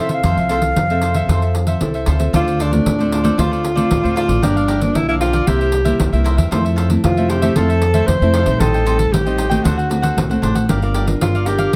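A straight 4/4 groove at 115 BPM drives this lively, sunny excerpt of samba and choro in D minor, cut from a longer piece. The jingly pandeiro, played with hard hands in a small-room sound, joins at 0.1 seconds, followed at 0.2 seconds by a woody, thumpy pizzicato upright bass that sits up front, while a crisp, picked cavaquinho and a small, fingerpicked nylon-string guitar fill out the accompaniment throughout. A bright baroque flute opens with a brief, airy, tongued phrase in a straight tone, ending at 1.8 seconds. At 2.4 seconds a breathy tenor saxophone takes over for a jazz-style solo, its mellow subtone, soft attack, scooped notes and vibrato giving it a whispered, intimate character. The harmony moves from Fmaj7 through Dm7, Gm7 and C7, then turns toward Am7b5 and D7 before settling on Gm7, all captured with close, detailed microphones and light reverb.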